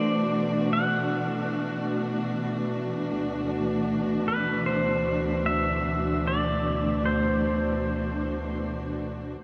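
A straight 4/4 pulse at 76 BPM moves gently beneath this serene, weightless ambient fragment, tuned to A4 = 442 Hz. A bowed studio string section holds sustained chords from D2 to F#4 throughout, played sul tasto with vibrato, its ensemble tone intimate, smooth on top and placed close and up front. Above it, a clean electric pedal steel guitar, played with fingerpicks and slide, carries the melody between B4 and F#5. The steel's compressed volume swells sit slightly behind the strings and fall silent at 8.6 seconds while the strings carry on to 9.4 seconds. The harmony rests on D before shifting to C over a D bass at 3.1 seconds, and shimmer reverb on both parts, with added delay on the steel, dissolves into a huge, wet ambient space with a 7.5-second decay.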